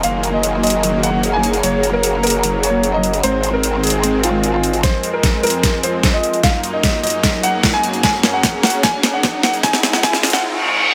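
This heavy, aggressive wobble dubstep excerpt opens with a smooth, vintage grand piano melody in half-time feel, its tone rounded off by a low-pass filter and tape echo. A lush wall of detuned sawtooth supersaw chords sustains beneath it, pumping against the sidechain, while a warbling, lo-fi pad sits dark and nostalgic in the background with chorus and its own reverb. Up front, a growling, detuned growl bass wobbles through a formant filter with chorus and overdrive, and an overdriven drum kit hits with a deep snare and bright hats. At 4.8 seconds the bass drops out and a knocking, overdriven electronic kick enters as a build-up begins, with a drum fill and a filter sweep on the piano. A riser and reverse cymbal creep in from the background at 7.2 seconds, and the excerpt breaks off on the reverse cymbal, all within a light digital ambience.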